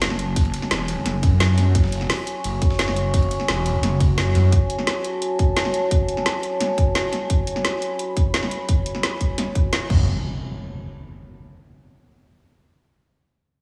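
Dark technical drum and bass with an aggressive edge, this short cut opens on a sub drop and impact alongside a layered kit with a woody snare and metallic hats and, until about 4.4 seconds, a very quiet, gritty, pitched-up breakbeat kit, before a punchy, up-front electronic kick arrives at 0.4 seconds. A swirling, thick, detuned saw bass with phaser and overdrive drives the low end in its first few seconds and briefly returns near 9.9 seconds, while a deep, moody analog pad holds sustained F# minor chords with chorus and sidechain pumping. The mix is dreamy and soaked in lush hall reverb, and a final sub drop and impact ring out through 11.3 seconds.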